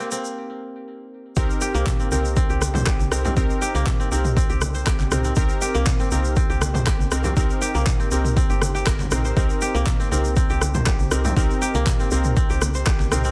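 A dense, heavily limited modern mix with light reverb opens this spiritual, hypnotic afro house excerpt in C minor, moving at 120 BPM in a straight 4/4 over a Cm7 chord. A crisp, ringing, fingerpicked kora plays arpeggios from the start, alongside round, full-bodied sawtooth analog key stabs that are detuned and chorused with a filter sweep, both pumping under sidechain and trailed by delay, while a grainy, band-limited egg shaker ticks underneath. After a short break, the drop lands at 1.4 seconds with a punchy, layered electronic kick up front and a woody, dark FM bass, soft and decaying, thickened by tube saturation and pumping under sidechain. A produced deep house kit follows at 1.9 seconds with handclaps, rim clicks, and toms, its snare and toms softened by low-pass filtering. Bright, vintage-toned congas played with soft hands join at 2.1 seconds, sitting in the background of the groove.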